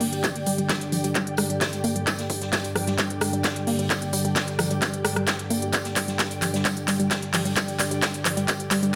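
Intense and hypnotic, this driving peak-time techno excerpt runs at 131 BPM in a straight 4/4 and sits entirely in a build-up with a drum fill across its nine seconds, over a G5 chord. An analog pluck carries the riff between F3 and Bb3, its round, detuned sawtooth-and-square tone given a fast attack, short decay, chorus, tape echo and sidechain pumping. Beneath it, a warbling, vintage analog drone holds G2 to D3 with pulse-width modulation, a slow attack and long release, also chorused and pumping. High above, an ethereal, airy pad spans G4 to G5, its detuned unison layers shimmering with ensemble chorus, built-in reverb and tremolo. Up front, a techno drum kit of handclaps, smooth hats, rim click and shaker pumps against the sidechain, while a polished acoustic street-band kit of hi-hat, medium-tuned snare and tambourine sits in the background in a big, high-passed room, joined by a punchy, layered electronic kick from 0.2 seconds to 8.6 seconds. 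Light studio reverb ties the mix together.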